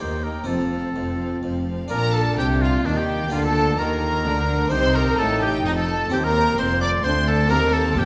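Classical, a baroque-style concerto movement in Bb major at 128 BPM in 3/4, lively and festive in mood, cut from a longer piece. A clear oboe sits up front with light vibrato, carrying the melody alongside a violin section playing high above it, while a second violin section adds a focused second line beneath. A bright, dry harpsichord with a single set of strings keeps up the accompaniment in the background, joined by a smooth, distant viola section. The bass is anchored by a dark, close double bass section with a soft attack and an even cello section, all bowed with vibrato. Everyone plays throughout the 8.1 seconds, moving from Eb and F into a second section from 1.9 seconds that passes through Bb, Bb/D and Cm, all set in the wet reverb of a concert hall.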